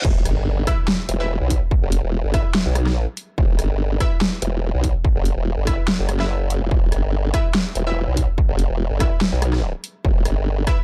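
A saturated, chorused wobble bass with formant-filtered pulse and sine tones wobbles up front through this menacing heavy dubstep drop, driven by a distorted electronic kick and a layered kit with a huge snare and bright hats in half-time, while a reverse cymbal and impact sit in the background for the first 1.7 seconds and bold, detuned sawtooth orchestra-hit-style stabs with tape echo punch in from 0.7 seconds, all in a dark, dry production cut from a longer piece.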